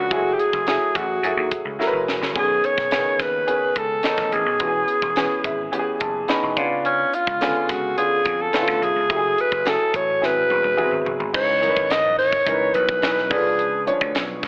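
A breathy, raspy alto saxophone with vibrato carries the melody up front in this upbeat, breezy 1980s jazz-funk pop piece at 107 BPM in B mixolydian, over a clear concert grand piano in lush chorus that adds a fill at 5.2 seconds, a growly, amped vintage slap bass, a crisp fusion drum kit with a high-tuned snare and punchy kick that fills at 10.2 seconds, and very quiet, ringing congas entering at 11.5 seconds, while the mix carries a telephone-like sound with light room reverb as the chords move from F#m9 through G#7alt to C#m9.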